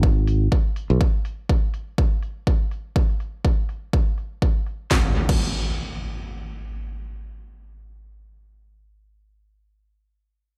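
A growly, bright fingered electric bass pumps up front under sidechain for its first 1.0 s of this energetic, soulful piano house clip at 123 BPM with swung 16ths, beside a punchy, tape-warm kick and a layered house kit of cracking snare, crisp filtered hats and crash with tape echo that enters at 0.3 s, both playing until 5.4 s, while an up-front electronic impact arrives at 4.9 s in a dry, echo-heavy mix.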